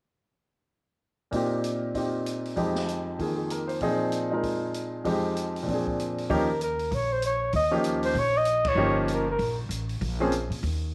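A playful, warm slice of small-group swing and bop, cut from a longer piece, moving briskly at 193 BPM in 4/4 with a swung eighth-note feel in Eb mixolydian. A clear baby grand piano with short sustain sits up front from 1.3 seconds, comping through chords like Eb69/Bb, Fm9 and Bb7sus4, while an open acoustic drum kit with dark cymbals, a high-tuned snare and a boomy kick plays softly underneath on hi-hat, ride, snare and kick. At 6.3 seconds the harmony moves to Eb7 as a woody, thumpy pizzicato upright bass enters low, and a mellow, vintage-toned flugelhorn takes the melody up front with vibrato and scooped notes, carrying a slapback echo. The band hits an accent together at 8.6 seconds before the horn drops out and the piano stops at 10.3 seconds, with the bass sounding until the end over a closing Bbm7. A moderate plate reverb gives the whole group a natural studio room sound.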